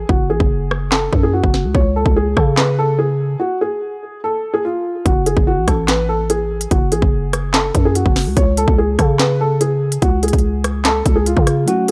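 A dark, woody upright piano opens this ominous drill excerpt, carrying the melody alongside a growling, buzzy 808-style bass with a fast attack and decaying tail, both placed up front. The drill kit arrives almost at once, its hard-clipped kick, sharp snare, crisp hats, rim clicks and handclaps giving an electronic, tape-tinged punch at 145 BPM in a half-time 4/4 feel. The piano sounds mellow and slightly detuned with a vintage character, while the harmony moves from F#sus2 to C#5 during an opening break, then to F#madd9 at 5.1 seconds before returning to C#5. The kick drops out at 11.7 seconds, just as a worn, slightly out-of-tune tine electric piano slips in briefly, clean but heard as if through built-in speakers. A digital ambience surrounds the parts, and the excerpt is tuned to A4 = 439 Hz.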